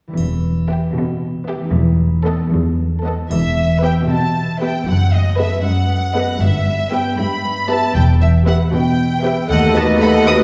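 Cinematic film cue in E minor, sneaky and quirky, moving in a straight 6/8 at 78 BPM in this excerpt cut from a longer piece. A ringing concert harp spreads arpeggios from 0.1 s as bowed cello and double bass sections hold the low end, and a close, dry, dark-toned triangle chimes only until 4.3 s. From 0.7 s a lush, vibrato-rich violin section carries the melody over a smooth second violin line and a dark, sul tasto viola section, all set back in the hall of a reverberant scoring stage.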